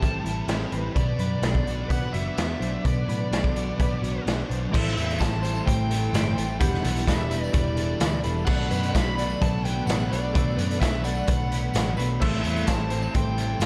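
Melancholic and hazy, this shoegaze and dream pop rock excerpt moves with a straight 4/4 feel, as a distorted, bluesy lead guitar sings its melody through analog delay over a thick fuzz riff with ensemble chorus and a compressed clean guitar riff washed in reverse reverb. A dark, fingered electric guitar adds chorused arpeggios in the background, a very quiet string machine cello pad holds slow-attack sawtooth chords, and a round, foam-muted bass anchors the low end beneath a gritty, saturated garage kit with punchy kick and rolled-off top. A bright, jingly tambourine joins at 4.9 seconds, all within a small room ambience and a dark production.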